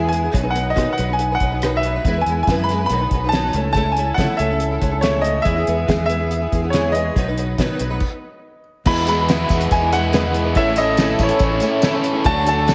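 A straight, steady 4/4 pulse drives this jangly, open-road slice of folk rock and heartland rock, cut from a longer piece. A bright, brilliant baby grand piano carries the melody up high, intimate and polished with short sustain and audible action noise, trailed by a diffuse ambient delay. Beneath it an old ladder-braced acoustic guitar picks a boxy, up-front accompaniment through an analog chorus, while a round, direct fingered electric bass and a cloth-damped, thuddy drum kit, with its fat snare, tight kick and dark cymbals, hold the groove. The band stops briefly at 8.0 seconds, and at 8.9 seconds the music moves into a new section: a double-tracked overdriven electric guitar adds a riff, a clean tonewheel organ with key click sustains chords very quietly, and a jingly tambourine joins in the background at 9.1 seconds. The whole mix is soaked in a lush hall reverb, giving the performance a dreamy glow.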